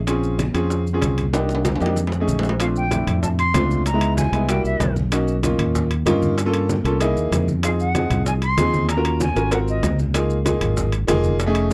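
A round, punchy fingered electric bass drives this sultry Afro-Cuban jazz passage in Bb minor at 191 BPM, joined by a clear, short-sustained grand piano, distant low-tuned congas, tight high-tuned bongos, ringing metal-shell timbales and grainy maracas, with a drum fill at 1.3 seconds before a pure, straight-toned silver concert flute carries the melody from 2.6 seconds through rich extended chords in a dry, close 1970s-style studio sound with light reverb.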